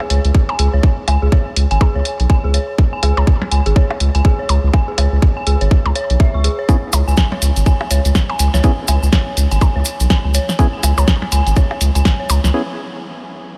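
A tight, up-front electronic kick and a punchy analog drum machine's hi-hat and snare drive a swung 4/4 minimal techno groove, with a deep, saturated sub bass pumping beneath and faint percussion blips trailing tape echo in the background. An eerie, inharmonic FM synth bell repeats a mellow riff through chorus and diffuse ambient delay, setting a cool, sparse mood. At 6.7 seconds a hollow, organ-like stab and grainy maracas join quietly, before a brief break at 12.5 seconds in this fragment of a longer piece.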